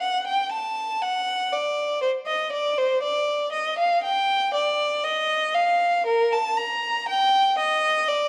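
A single bowed violin sits up front, its clear, focused tone carrying vibrato and a smooth top as it moves between Bb4 and Bb5 across this 8.3-second excerpt from a longer baroque-style suite movement for unaccompanied violin. The mood is solemn and introspective, with a slow 60 BPM pulse in 3/4 loosened by rubato. A moderate recital hall reverb surrounds the player within a dark production.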